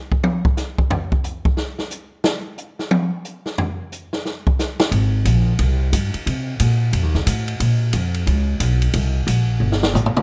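A swung 4/4 pulse at 179 BPM drives this energetic big band swing fragment in Ab major, opening with a drum solo on an up-front acoustic kit of hi-hat, ride, medium-tuned snare, toms and boomy kick before a woody, thumpy pizzicato upright bass joins at 4.9 seconds, and a drum fill at 9.6 seconds closes it out in light reverb.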